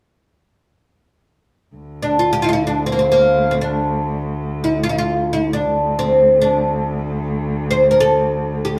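A wet stone room with a 1.2-second reverb surrounds this live, in-the-room recording, a short cut from a longer Arabic piece in free time and D maqam bayati, tuned to A4 = 439 Hz. At 1.8 s a distant bowed cello settles onto a smooth, even D2 drone with vibrato, and from 2.0 s a bright, woody fretless oud sits up front, its plectrum-plucked double strings carrying the melody between Bb3 and C5. The mood is hypnotic and melancholic.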